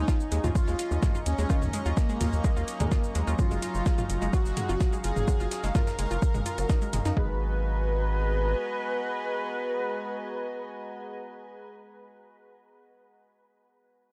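Melodic techno in a dramatic, driving mood, this cut from a longer piece opens on a drop with an overdriven, up-front electronic kick, a deep house kit of metallic hats, shaker and toms, and a very quiet, gritty breakbeat-style kit with a high-tuned snare, all laid beneath a pumping, round, wave-folded analog bass saturated through tubes. Above them, a smooth, airy supersaw melody with analog delay sits over a lush, detuned unison pluck arpeggio, a muted, phased dub chord stab and an evolving, morphing wavetable pad in the background, while a nasal, reedy bowed string section adds texture as the harmony moves from D#m7 to F#maj7. The drums drop out at about 7.2 s, where the chords settle on G#m7, and the bass stops at 8.5 s, leaving the synths and strings in a dry, gritty digital ambience.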